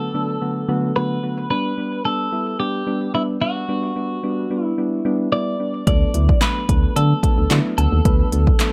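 In a straight 4/4, this upbeat, carefree dance-pop fragment opens on mellow, warbling electric-piano-like synth keys with chorus and sidechain pumping, beneath a clean, twangy twelve-string electric guitar melody trailed by dub echo. At 5.9 seconds a punchy deep house drum kit of kick, snare, handclaps and smooth hi-hats arrives up front, alongside a round, dark FM bass that also pumps to the sidechain. A light reverb sits over the mix as the chords move from D6 to G and back to D6.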